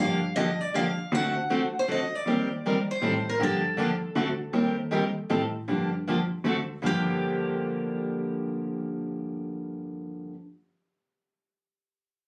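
This phone recording catches a small, booth-like room with a touch of club reverb, giving the playing a close, immediate feel. It is a fiery, virtuosic slice of acoustic string swing in the jazz manouche style, set in a swung waltz time and cut from a longer piece. Up front, a picked archtop guitar carries the melody with a bright tone and audible finger squeaks, while a picked steel-string dreadnought with fresh strings supplies the accompaniment. Underneath, a single bowed cello plays the bass line with a rich, focused tone and vibrato, dropping out at 9.9 s just before the guitars finish around 10.4 s. The harmony cycles through Gm7, D7, Eb6, Am7b5 and Gm9 before settling back on Gm7 at 6.8 s.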